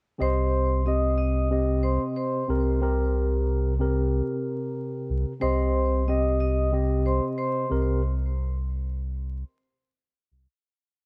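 Swung sixteenths at 92 BPM in 4/4 set the pulse for this reflective, gritty boom-bap hip-hop piece in C minor, heard in a small room with light reverb and a layer of vinyl crackle. A metallic, ringing vibraphone struck with medium hard mallets carries a short looping melody doubled in octaves, its slow motor vibrato treated with delay. Mellow, clean electric piano chords are chopped and repeated like a sampled loop with a cassette-tape colour, while a deep, full sine-and-triangle sub bass holds a looped line up front. By 8.0 seconds the keys have dropped away for a fading break, leaving the bass to sustain until 10.5 seconds.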